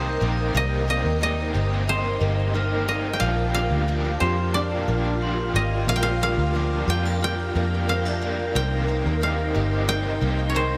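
Bathed in a huge ambient reverb, this hazy, haunting dream pop excerpt at 90 BPM sets a woody, fingerpicked koto melody with shimmer reverb and tape echo over a round, foam-muted electric bass up front, an overdriven semi-hollow guitar with tremolo, mellow organ-like ensemble string chords, octave-doubled twelve-string acoustic arpeggios and a ringing glockenspiel that drops out at 8.8 s, as the harmony moves from Cm7 to Bb6 and back.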